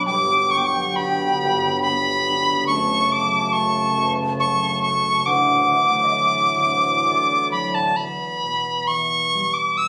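Celtic slow air in E dorian, a longing, mournful fragment cut from a longer piece, drifting in rubato 3/4 at roughly 63-71 BPM. A bright, reedy wooden whistle carries the melody up front with chiff, crisp attack and vibrato, while a breathy, distant wooden flute traces an unsteady, tongued second line, and a breathing hand-pumped harmonium holds sustained chords beneath ringing, fingerpicked concert harp over Gmaj7, F#m and Dadd9. Flute and harmonium stop at 7.9 s, leaving whistle and harp on an E minor chord, all heard through moderate recital hall reverb on a compressed phone recording with club ambience.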